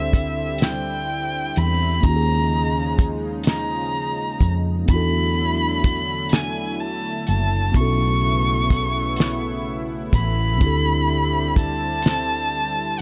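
A slow, straight 6/8 pulse at 42 BPM carries this sensual, intimate R&B excerpt, where a damped 70s drum kit with a fat snare and tight kick sits up front alongside a woody, round fretless electric bass, a mellow tine electric piano and a thick, warbling unison pad with chorus hold suspended ninth chords moving from D9sus4 through D#9sus4, E9sus4 and B9sus4, and a rich, smooth solo violin sings the bowed melody with vibrato, with plate reverb on the violin, piano and pad inside a lightly reverberant mix capped below 7.9 kHz.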